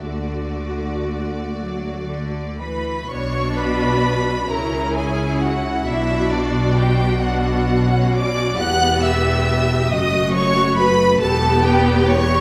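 Moving in a rubato 6/8 at a slow 38-46 dotted-quarter beats per minute, this tender classical movement for string orchestra, cut from a longer piece, opens in D major before turning to B minor at 3.1 s and closing on an E minor chord. A lush, distant violin section carries the high melody over a second violin line, while a focused viola section supplies the inner accompaniment and a clear cello section pairs with an intense double bass section on the low line, all bowed with vibrato. The strings bloom in the wet reverb of a scoring stage, giving the whole passage a smooth, warm glow.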